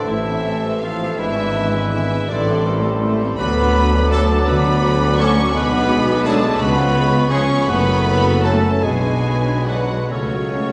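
A slow, rubato romantic orchestral passage in 6/8 opens with the full ensemble at once, a rich, lush violin section carrying a melancholic, yearning melody over a dark, expressive viola line with portamento, sustained French horn and trombone chords, background trumpet stabs, and a bass of double basses, cellos and tuba, settling into F# minor from 3.4 seconds. Woodwinds weave second lines around the tune, with a pure, bright wooden flute, a clear oboe and a quiet clarinet, joined by a very quiet second violin section, while a background bassoon adds accompaniment. The sound is heard from further back in a reverberant scoring stage, the trombones and trumpets dropping out at 9.8 seconds before this fragment of a longer piece ends at 10.7 seconds.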